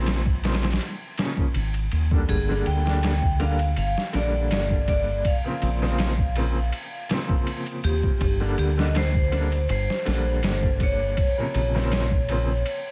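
Dry, vinyl-crackled sound frames this dark, cinematic trip hop excerpt at 81 BPM with a light swing, where a compressed, pitched-down sampler-style drum kit with thumpy kick, snare and ride cymbal sits up front beside a round, dub-deep fingered electric bass, as a woody upright piano with tremolo moves between Bbmadd9 and Gm and a metallic, ringing hard-mallet vibraphone enters with the melody at 2.3 seconds, both coloured by tape echo and vintage 12-bit sampler grit.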